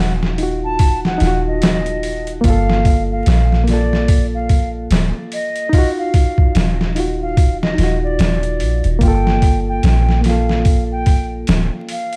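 A dark, close production with little reverb and a layer of vinyl crackle frames this short trip hop excerpt in G minor, moving at a slow 73 BPM in 4/4 with a 16th-note swing. The sampler-style drum kit sits up front, compressed and pitched down, its thumpy kick, medium-tuned snare and hi-hat carrying a gritty, tape-warm grain from 0.2 seconds onward. Beneath it, a soft 808-style bass rounds out the low end with a deep, sine-like tone, a fast attack and a decaying tail, ending at 11.7 seconds. A reedy, barky electric piano holds the accompaniment through light overdrive and harmonic tremolo, heard as if through its built-in speakers, cycling between Ebmadd9 and Gm7. Over the top, an airy baroque flute with a woody, straight tone and crisp attack carries the melody, trailed by dub echo, lending the melancholic mood a haunted edge.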